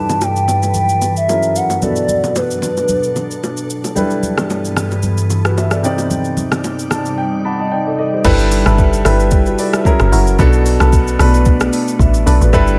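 This amapiano track moves at a relaxed, soulful 112 BPM in G major, with a gentle 16th-note swing and chords circling G6/9, F#7, Bm7 and Cmadd9. A hollow, woody synth lead with soft vibrato and tape echo carries the melody at the start, then drops away at 3.7 seconds. A dark, mellow grand piano sits up front as accompaniment over a glassy, ethereal FM pad with a slow attack and a long, reverberant tail. The smooth R&B kit brings a soft kick, hi-hat, rim click, shaker and crash, while bongos and congas add a small-room acoustic touch in the opening stretch. A piano fill at 6.6 seconds leads into the drop at 8.2 seconds, where a deep, round log drum bass sits up front in the mix and a nasal, percussive organ stab with chorus and echo sits in the background. Light reverb gives the whole piece a soft sense of space.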